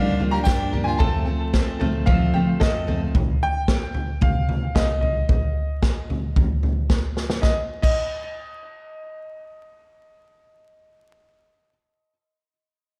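Hopeful, uplifting indie folk at 112 BPM in 4/4, taken from a longer piece, where a clear, woody upright piano carries the melody through tape echo over Gm7 and F chords. A brief focused fiddle line, a full-bodied jumbo steel-string guitar with finger squeak and twangy, plunky banjo arpeggios in the background all sound only in the opening seconds, while a thumpy gut-string pizzicato bass holds on until 5.2 seconds and a jingly tambourine flickers briefly. The up-front, roomy acoustic drum kit, played with bundle sticks against dark cymbals, throws a fill at 7.2 seconds and drops out at 8.0, leaving the echoing piano under light studio reverb and vinyl crackle.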